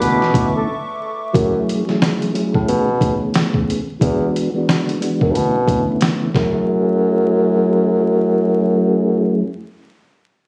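A dark, smooth-topped bassoon with vibrato carries the bass through this tough, moody boom-bap hip-hop excerpt at 90 BPM in F# minor, beneath a soft, flute-like tonewheel organ with slow rotary, cassette tape and low-pass filter that gets a filter sweep through the middle section, while a veiled, growling bucket-muted trumpet with delay plays only until 0.7 seconds, a deep, detuned analog pad with chorus holds chords at the opening, and a compressed, pitched-down sampler-style drum kit with a thumpy kick drives the beat until 6.5 seconds, the mix carrying vinyl crackle, light reverb and the sound of a phone recording in the room.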